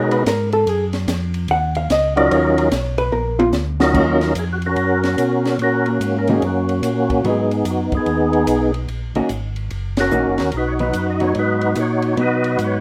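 A fat, lightly overdriven percussive tonewheel organ carries the melody in this smoky, soulful soul jazz organ trio excerpt in Eb minor at 146 BPM with a swung feel, its key click, chorus vibrato and slow rotary speaker sitting up front. A dark, clean, compressed hollow-body guitar, bathed in plate reverb, takes a fingered solo through the opening 4.0 seconds before settling into accompaniment, while a mellow, round second organ supplies the bass with its own light overdrive and slow rotary. A compact, dry cocktail kit with dark cymbals, a high-tuned snare and a punchy kick adds a fill at 3.1 seconds, and the whole band hits an accent at 9.9 seconds, all heard through a small, reverberant room in a rough home-demo mix.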